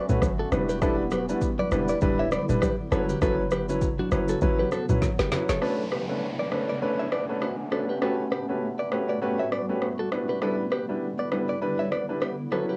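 A home cassette recording with moderate studio reverb carries this smooth, hypnotic afrobeats excerpt, where a bright, compressed clean electric guitar riff with tape echo rides over boxy grand piano with audible action noise, a cloudy granular pad pumping under sidechain, and an overdriven afro-pop drum kit with deep kick and woody snare, while a boomy 808-style bass and thick-skinned congas fall away around 5.6 s after a drum fill and an electronic downlifter enters for the second half.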